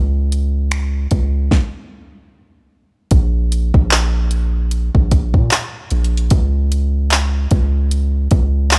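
A deep, mellow, sine-toned 808-style bass with long, decaying notes opens this sensual, moody contemporary R&B excerpt, joined at 0.3 s by an up-front, tape-warm electronic drum kit of soft kick, fat snare, warm hi-hat, finger snaps and handclaps in a swung sixteenth feel, with a stop from 1.5 to 3.1 s, all in a dry, close sound.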